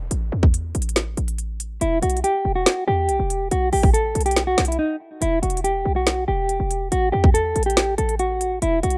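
Hard-hitting and eerie, this short trap cut from a longer piece moves at 141 BPM with a half-time feel in E minor, opening on a faint downlifter over an overdriven, up-front electronic kit of hard-clipped kick, woody snare and crisp hats, while a punchy, tight 808-style bass with a sine body, noise layer, fast attack and decaying tail holds the low end. At 1.8 seconds a dark, clean, fingered electric guitar enters with a mellow melody colored by tremolo and a low-pass filter, drifting over chords that move from Em to B7(no3)/A, back to Em and on to A5. The rough home demo mix carries little reverb, keeping every part close and dry.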